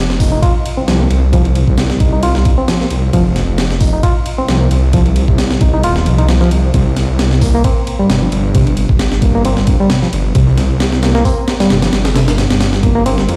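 A swung 133 BPM breakbeat groove in 4/4 drives this swaggering, energetic excerpt, with a gritty, pitched-up sampler-style drum kit of thumpy kick, snare, hi-hat and ride up front, a thick, menacing detuned saw bass beating low beneath it, and a barky, reedy electric piano riff carrying spring reverb, digital delay and a low-pass filter sweep over F5 and C5 chords, all heard as if playing through a big sound system in a bare room under vinyl crackle.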